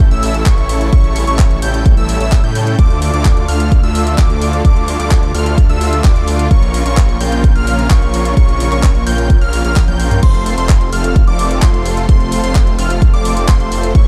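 A huge, euphoric supersaw lead carries the riff through this uplifting, anthemic stretch of festival progressive house at 129 BPM in F major, with a bright, catchy plucked unison lead arpeggiating high above and lush bowed symphonic strings holding sustained chords in the background, all three pumping to the sidechain. A punchy, up-front electronic kick drives the straight 4/4 groove alongside a house kit of hi-hat, handclaps, crash and toms, while a thick detuned saw bass with chorus fills the low end under chords moving from A through Dm and Bbm to F. A drum fill at 9.8 seconds launches a fresh pass of the drop at 10.2 seconds, and the dark, warm production keeps reverb to a minimum.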